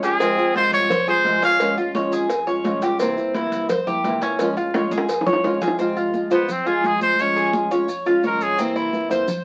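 Driven by a straight 4/4 pulse at a brisk 172 BPM, this sultry passage of Cuban son and guajira in F harmonic minor cycles through Fm, Bbm7 and C7, with a brilliant, punchy trumpet up front, full of vibrato and scooped notes, sounding briefly at the start and returning for a solo at 6.3 seconds, over a thumb-plucked flamenco guitar, a metallic, double-strung Cuban tres picking arpeggios, a woody, growly upright bass, bright thin-skinned congas, tight high-tuned cowbell and bongos that drop out at 5.8 seconds after a drum fill, and grainy maracas, set in moderate studio reverb beneath the crackle of a very old 78 rpm record.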